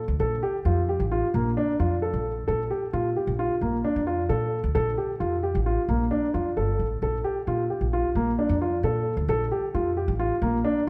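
A polished baby grand piano and a woody, steel-strung pizzicato upright bass open together and sit up front, the piano playing arpeggios over a Bbmaj7 chord while the bass carries the low end. This playful, hopeful piece of contemporary chamber music moves in a straight 5/4 at 132 BPM in Bb major, with the present piano sounding until 10.8 seconds and the bass until 10.9 seconds. A dark, warm production and a wet scoring-stage reverb give this short cut from a longer work a spacious glow.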